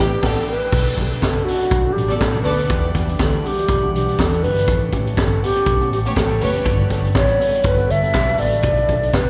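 A full-band accent opens this danceable, glamorous disco excerpt, with the hollow, airy alto flute, a clear, lush string section, a worn tine electric piano and a chamber organ sounding together before the vintage drum kit joins at 0.2 seconds. Up front, the flute carries the melody with vibrato and tongued notes, its lifted highs cutting through a deep church reverb that places the whole band in one resonant room. The bowed strings add a focused, smooth-topped second line that drops out at 2.7 seconds and returns only briefly near 6.1 seconds. Underneath, the slightly out-of-tune electric piano plays lightly overdriven accompaniment through its built-in speakers, while the organ's principal chorus holds full sustained chords with a touch of chiff, both set back in the mix. The fingered electric bass is dark, round and amped, and the punchy, mid-forward drum kit brings kick, a high-tuned snare, hi-hat, handclaps and crash cymbal with a rolled-off top and a gentle swing. 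From 0.7 seconds a grainy, bright, compressed tube shaker sits quietly in the background as the harmony moves through Bm7, Em7, A7 and Gmaj7.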